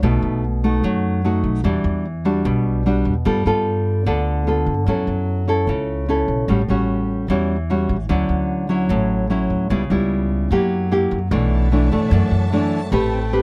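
Sunny and romantic, this straight-feel bossa nova at 149 BPM, cut from a longer piece, sets an up-front, thumb-plucked nylon-string guitar over a woody, thumpy pizzicato upright bass, moving through jazzy chords from B7 through Dmaj9 to F#7b9 in a dry, close, detailed sound until a soft, lush bowed string section with expressive vibrato joins quietly above them at 11.3 s on a Bm11.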